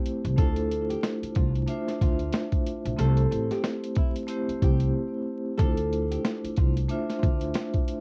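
A dry, lo-fi home cassette sound with vinyl crackle frames this short cut from a longer boom-bap hip-hop piece, reflective and dark in D minor at 92 BPM with a swung 16th-note feel. A gritty, compressed sampler-style drum kit sits up front with a thumpy kick, a medium-tuned snare and hi-hat, carrying a tape-warm grit. Beside it, a woody, growly upright bass played pizzicato holds the low end from 0.2 seconds. The vibraphone, struck with medium mallets, rings with a metallic shimmer and medium motor vibrato as it comps through Dm7 and Am7. Above them, a full-bodied, fingerpicked nylon-string guitar sings the melody in a deep classical tone, finger squeaks audible, its lines trailed by tape echo. A brief break from 4.9 to 5.6 seconds gives way to a return to Dm7.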